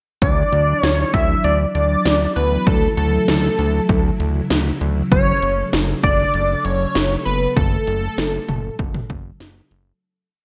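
Bright 1980s-style digital production with plate-reverb ambience frames this short, cool and nocturnal synth-pop piece. A punchy, overdriven house drum kit with gated reverb and syncopated toms plays alongside a pulsing, detuned fat analog bass, while chorused string-machine cellos hold a mellow background pad and a bold unison lead carries a motif-based melody over Dadd9 moving to F#m at 5.1 seconds, before the fade-out from 7.6 seconds.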